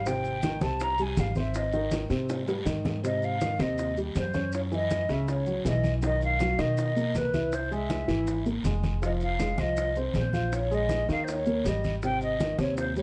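Lightly reverberant and softly rounded at the top, this lively, danceable Afro-Cuban jazz cut in Ab major moves at 160 BPM in a straight 4/4. A breathy, hollow flute carries the melody up front, opening with a solo that leads into a drum fill at 2.3 seconds. A woody, growly pizzicato upright bass and a dark, vintage grand piano with audible action noise support it through chords such as Abmaj7, Bmaj7, Caug7 and Fm7. Thick-skinned, low-tuned congas, round bongos and grainy maracas sit in the background, joined by a raspy guiro.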